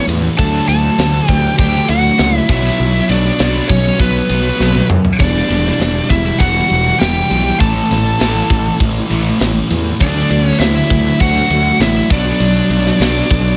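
A straight 4/4 pulse at 100 BPM drives this dark, epic heavy metal excerpt, with a tight acoustic drum kit of kick, snare, toms, crash and ride sitting mid-forward in a studio room and breaking into a fill at 4.6 seconds. A distorted high-gain lead guitar carries the melody over a second, more recessed lead line, while two sludgy overdriven guitars pick riffs in the background and a growly, fuzzed picked bass anchors the low end. Moving through D, Bm, Em and A5 before returning to D and Bm, the mix stays dry, with little reverb.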